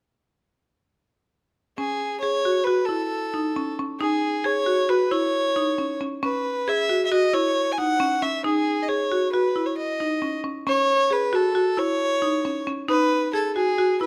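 At 1.8 seconds a marimba struck with hard mallets and a single bowed violin enter together, setting a restless, urgent mood for this contemporary chamber piece in 5/4 at 135 BPM with a straight feel. The marimba plays woody, percussive arpeggios between C#4 and G#4, its tone carrying a boxy small-room character. Above it, the violin carries the melody from G#4 to G#5 with light vibrato, sounding earthy and biting yet smooth at the top. Both instruments sit up front and in balance over a C#m chord, tuned to A4 = 439 Hz. Close, detailed microphones and light reverb give the sound an intimate, warm presence until both parts stop at 14.1 seconds, in a passage cut from a longer piece.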